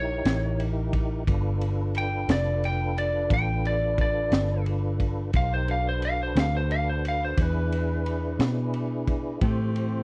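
Laid-back and rollicking, this slow 12/8 blues at 59 BPM in G mixolydian, cut from a longer piece, sets a twangy, slightly broken-up lead guitar solo up front until 8.7 seconds over a round, foam-muted fingered electric bass, a mellow tonewheel organ holding chords through a slow rotary speaker with chorus vibrato, and a gritty, saturated breakbeat kit of kick, snare and ride with dark cymbals and a high-tuned snare, before a distant, roomy saxophone section slips in with sustained chords at 9.4 seconds, in a dry, close 1970s-style studio recording.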